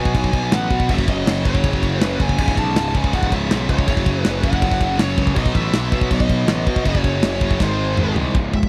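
Heavy metal with a relentless drive, cut from a longer piece: a distorted, high-gain lead guitar with tape echo carries the melody over two bright, picked rhythm guitars playing the riff (one set back in the background), while a growly fuzz bass and a tight, up-front acoustic kit of kick, medium-tuned snare, toms, crash and china cymbal drive the groove, all captured in a dry, close 1970s-style studio sound, with a drum fill from 7.6 to 8.3 seconds.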